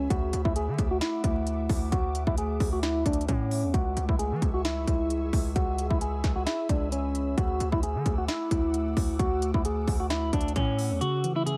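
Set in a half-time 4/4 feel at 132 BPM, this brooding, hard-hitting trap excerpt opens with a distorted 808-style bass that lands heavy and saturated with a fast attack and decaying tail, joined a moment later by a produced drum kit built on a hard-clipped kick, sharp snare and crisp hi-hats. Over them, a clean, dark semi-hollow electric guitar carries the melody through a phaser and a low-pass filter, with a filter sweep running from the start until 11.0 seconds. Beneath everything sits a quieter, ethereal pad of detuned sawtooth and triangle voices, its slow attack and long release softened by ensemble chorus, built-in reverb and tremolo. The harmony moves between Dadd9 and C#m, and at 11.0 seconds the kick and bass drop away as a mellow tine electric piano briefly enters in its low register on the C#m chord. The mix is dry and close, with drums, bass, guitar and piano up front and a layer of vinyl crackle lending a dusty, lo-fi grain.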